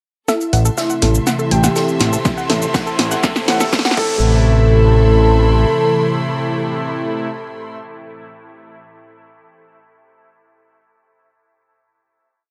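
A springy, echo-heavy mix with a thinned-out low end opens this short, complete melodic techno piece in A minor at 122 BPM, melancholic and hypnotic in mood. A smooth portamento lead sings a repeating riff with vibrato and chorus, shadowed an octave higher by a glassy, crystalline wavetable pluck in the background, while a round, wave-folded analog pluck cycles a three-step sequence that drifts against the bar until about 4.4 seconds. Underneath, a fat, detuned sawtooth bass pumps off the beat up front, brassy, warbling pad stabs echo sparsely in open voicings, and a lush unison pad, a bowed string section with slowly shifting chords and a tense, string-like drone from 3.0 seconds fill out the harmony. A tape-warm drum machine drives programmed hats, shaker, backbeat snare and crash, joined faintly by a looped acoustic breakbeat and, from 2.3 seconds, a punchy four-on-the-floor kick. The opening build, with a drum fill, filter sweeps on the lead, pad and arpeggio, and a background riser, resolves at 4.2 seconds into a sustained final A minor chord carried by the strings, pads, lead and drone.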